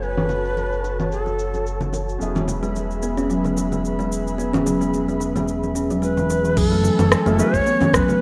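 A lightly swung groove from an organic electronic drum kit of congas, rim click, shaker and crash sets a meditative, unhurried downtempo pulse. The kit sits up front, its cymbals, snare and percussion dulled by low-pass filtering and a filter sweep, while soft-handed bongos and congas ring dry in the background. A breathy cedar flute, close-miked and expressive with vibrato and a chiffy attack, sings a short phrase through a digital delay, then returns at 6.0 s. Beneath it, a felt-muted upright piano plays mellow, intimate accompaniment, an airy, detuned pad holds chorused chords, and a dark, gliding synth bass sustains low notes, all three pumping with sidechain compression. A woody kalimba joins at 2.4 s with plucked, delayed arpeggios, and a gritty, thumpy electronic kick arrives at 6.6 s as the harmony settles onto an added-ninth chord. The whole has the feel of a rough home demo in a small, moderately reverberant room, cut from a longer piece.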